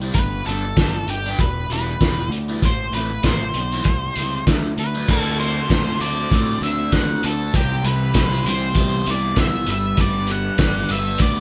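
A straight 4/4 groove from a muffled, cloth-damped drum kit with a fat snare and dark cymbals anchors this wistful, jangly indie rock excerpt. A bright, phased overdriven guitar plays a riff with a second overdriven guitar in the background, and a warm fuzz bass runs beneath them. Over the top, a dark octave-fuzz lead guitar carries the melody, all sounding like a band playing live in one room with light reverb as the chords move from G through Em, Am, C and D into D7, Cmaj7 and G6.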